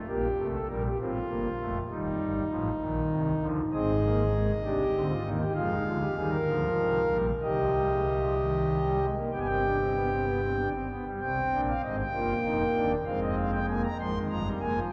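This baroque-style four-part fugue for solo pipe organ has a contemplative, serious mood. It moves at 65 beats per minute in a straight 12/8, counted in dotted quarters. The organ plays on its foundation stops with a thick, romantic voicing that spans from Eb1 up to C6, sitting up front in the mix, while the listener seems placed further back in a cathedral whose 5.2-second reverb surrounds every note. The harmony moves through Gm/Bb and Cm/Eb before settling into C minor from 3.7 s, then passes through Ab, Ddim, Cm and G. At 11.2 s a new section returns to Cm and then reaches Fm11. This short passage is cut from a longer piece.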